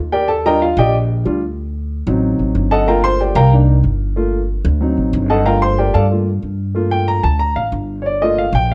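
A plucked upright bass opens this short Afro-Cuban jazz fragment, its gut strings giving a woody, thumpy tone placed up front in the mix. A fraction of a second later a grand piano joins, smooth and vintage in character, and it takes a solo across the whole clip while also filling the accompanying role. The mood is sultry and sophisticated, carried by a brisk straight feel in 4/4. The harmony moves through rich chords such as Ebmaj7, D7b9, Gm9 and Cm9, with the opening phrase repeating from 5.5 seconds. Light reverb and a dark, warm production round out the sound of the pair.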